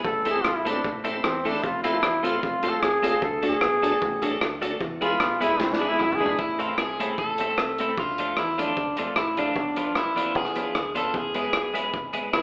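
Mischievous and driving, this 151 BPM ska piece in A harmonic minor rides a crunchy, gritty breakbeat kit and a round, punchy fingered bass, with a bright, compressed twelve-string electric guitar steeped in spring reverb and slapback echo and piping organ stabs with key click, while a brilliant, up-front trombone solo carries the melody until 6.4 seconds and a slightly broken-up electric guitar enters at 6.0 seconds to lead the second half, the band captured live in one room with an AM radio sound and a large, wet reverb.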